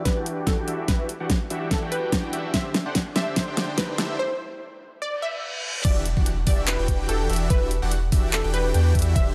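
Lush, detuned supersaw chords pump beneath a sweeping low-pass filter to lead this emotional, bittersweet future bass passage in E minor at 145 BPM with a swung half-time feel, joined by a punchy, wave-folded unison pluck melody carrying cassette grit and tape echo, a knocking, up-front electronic kick, and a layered dubstep kit of huge snare, bright hats, handclaps and crash in small room ambience, as a drum fill and brief break build toward the drop at 5.8 seconds, where a background riser and reverse cymbal give way to an impact and a thick, saturated sub bass.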